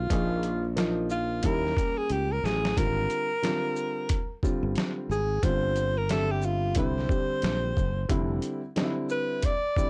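Dry, gritty and cassette-tinged, this smoky, mellow jazz-hop clip from a longer piece sets a breathy, whispered alto saxophone solo with vibrato up front over a growly fretless electric bass that sustains until 8.4 seconds, a dark concert grand piano with audible action noise, and an overdriven, compressed sampler-style soul drum kit with a thumpy kick and shaker that plays a brief fill at 2.1 seconds, all under a swung 16th-note feel.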